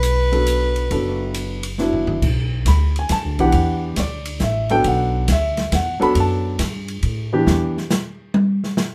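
A clear soprano saxophone with light vibrato, subtone and scooped notes opens this cool, moody small-group swing and bop jazz excerpt in 3/4 but stops at 1.8 s, leaving a woody, growly pizzicato upright bass and an intimate grand piano with audible action noise to carry the Bm7 and Em7 changes over an airy drum kit with dark cymbals and a boomy kick, which plays a brief fill and then takes a short solo from 7.5 s.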